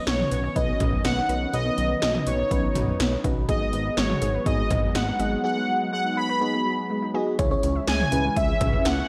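A bold, nasal analog synth brass carries the melody up front, its sawtooth tone colored by chorus and vibrato in this nocturnal, melancholic synth-pop excerpt from a longer piece. Beneath it, an FM electric piano layered with a soft pad plays dreamy accompaniment through chorus and phaser, while a thick, detuned unison pad holds slow-attack chords in the background. A warbly, dusty pluck with a lo-fi, mellow character spins arpeggios in the background as well, and a fat sawtooth analog bass anchors the low end. The 80s electronic pad drums sit up front with a punchy kick, metallic hats and gated reverb on the snare and toms, their tape-warm sound re-recorded in a large room. The harmony moves from Badd9 to G#m7 at 3.5 seconds before settling on C#m as a new section begins at 7.4 seconds, all wrapped in light reverb.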